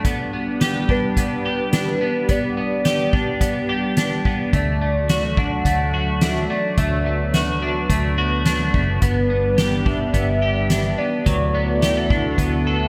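A straight 4/4 pulse from a soft-mallet drum kit, with a boomy kick and fat snare bathed in gated reverb, carries this floating, ethereal dream pop excerpt, while a twangy, clean electric guitar plays arpeggios up front through analog chorus and digital delay over a lush, detuned pad of sustained chords treated with chorus and phaser. A velvety synth lead enters at 0.9 s with a mellow, vibrato-tinged melody, a dark, round, foam-muted bass arrives at 4.5 s, and a very quiet, bell-like celesta adds delicate texture from 5.1 s to 11.5 s. Bright 1980s-style digital production and moderate plate reverb lend a spacious sheen as the harmony moves from G to D, back to G and on to D6.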